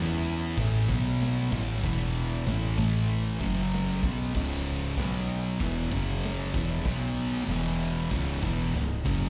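Stoner and doom metal in C# minor at 96 BPM, this brief excerpt from a longer piece feels hypnotic and brooding as a wall of fuzz guitars grinds through a riff built on power chords moving among E5, F#5, B5 and A5, settling onto C# minor near the end. Two thick, fuzzed-out guitars carry the riff, one up front and one very quiet beneath it, while a bright, double-tracked fuzz guitar sits in the background with distortion and a slapback echo. An overdriven picked bass, dark, round and punchy with foam-muted tone and tube saturation, anchors the low end up front. A big acoustic drum kit enters at 0.3 seconds with a punchy kick, medium-tuned snare, ride and crash, sounding natural in a large room. Hovering very quietly above it all is an eerie, metallic FM drone of sustained chords with slow attack, chorus and long release, and the whole mix has the feel of a live gig heard through a venue's PA in a recital-hall space.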